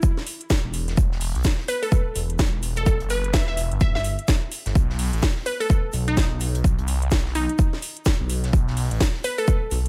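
Bass house with a swaggering, bouncy swing, cut from a longer piece, where a punchy, up-front electronic kick and an overdriven house kit with cracking snare and metallic hats drive a thick, swirling phased saw bass that enters with sidechain pumping at 0.6 s, while a crystalline wavetable pluck with chorus and tape echo sparkles above and a very quiet, dry reggae kit adds high-tuned snare, hi-hat and shaker, all in a dry mix that settles onto an Asus2 chord at 4.8 s.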